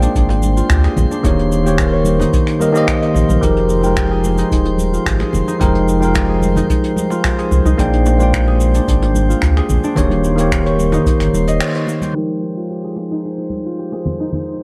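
A bell-like tine electric piano opens this smooth, wistful sunset chillout excerpt in F minor at 110 BPM, its bright, clean tone roughened by vintage 12-bit sampler grit and softened with a low-pass filter and delay, while a thumb-plucked concert harp rings out arpeggios beside it. Underneath, an up-front sub bass gives a deep, round, sine-like foundation. A jazz brush kit, heard distantly in a small room from the start, adds cabasa, finger snaps and muffled hi-hat, and a dry, tape-toned electronic kick joins at 0.2 seconds. Bongos and congas sit in the background with a close, acoustic snap, and a glassy texture of drifting overtones hovers high and calm, thickened by chorus and reverb. The chords move through Bb13, Eb7 and Fm11 under light room ambience until a band accent at 11.6 seconds opens a brief break where the bass drops out. From 12.2 seconds the electric piano and harp carry on through a filter sweep over the Fm11 chord, joined by the glassy texture and the hand percussion, until the cut.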